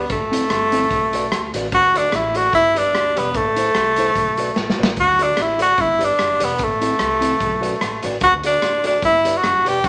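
A clear, up-front tenor saxophone carries the solo melody with light vibrato in this joyful, bouncy, lightly swung ska excerpt, over a clean, dark, fingered electric guitar, a woody, growly pizzicato upright bass and a raw garage drum kit with a punchy kick, medium-tuned snare and rolled-off top in a bright stone room, all cycling through Am, Bm, D and G in moderate studio reverb, with a drum fill at 4.6 seconds.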